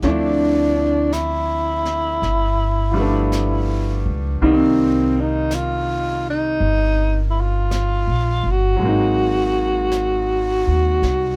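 A slow 55 BPM swing in 4/4 sets a smoky, melancholic jazz ballad moving through Dm9, G7, Cm7 and Ab7 in this brief cut from a longer piece. Up front, a growling tenor saxophone carries the melody with a breathy subtone, raspy grit, vibrato and scooped notes, while a bright upright piano with a brilliant, open ring and long sustain provides accompaniment. A woody, thumpy pizzicato upright bass sits forward beneath, and a soft brushed kit with a high-tuned snare and hi-hat sits quietly in the moderate booth ambience.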